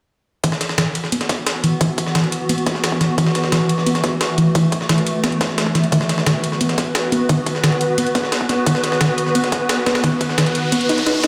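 A straight 4/4 drum and bass groove at 175 BPM starts at 0.4 seconds: a tight, layered electronic kick, metallic electronic hi-hats, and a gritty, compressed sampler-style breakbeat kit with a high-tuned snare and ride cymbal, all re-recorded in a small room. This short cut from a longer dark, technical track feels mechanical and aggressive, tuned slightly flat to A4 = 439 Hz. A soft, round pluck plays dark arpeggios with a fast attack and decaying tail, thickened by analog chorus and delay, while a filter sweep moves through it from beginning to end. Just after it, an up-front swarming drone holds sustained, detuned unison chords that evolve with a granular, tense edge and its own reverb, and both synths pump against the sidechain as the harmony shifts from E5 to B. A background riser builds from 10.1 seconds, and the kick stops at 10.3 seconds, leaving the hats, breakbeat and synths to carry the last moments. 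A wet plate reverb and a bare stone room heard over a big sound system give the whole piece a cavernous, hard-edged space.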